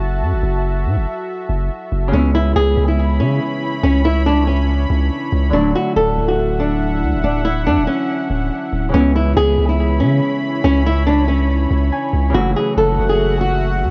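Up front, a thumb-plucked flamenco guitar with audible finger squeak carries the melody from 2.1 seconds, its tone softened by a low-pass filter and trailed by delay, while a bright, ringing Celtic harp accompanies it at a lower level. Underneath, from the opening break, a long, decaying sine 808-style bass sustains its low notes while a detuned, sawtooth-edged analog pad with chorus holds sustained chords, giving this ominous half-time hip hop piece at 141 BPM in C# phrygian a brooding, evolving depth. The whole mix sits in a small room with light reverb and carries the worn, warbling pitch drift of old cassette tape.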